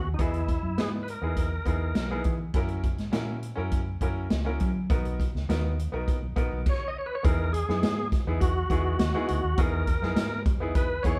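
A reedy, lightly overdriven tonewheel organ with chorus vibrato and key click carries the melody over a dark, round, foam-muted electric bass, joined at 0.2 seconds by a clear but worn grand piano and a punchy, up-front acoustic drum kit, with the organ falling silent at 2.2 seconds and returning at 6.7 seconds in this driving, passionate uptempo 1960s-style soul performance played live in one room with light reverb.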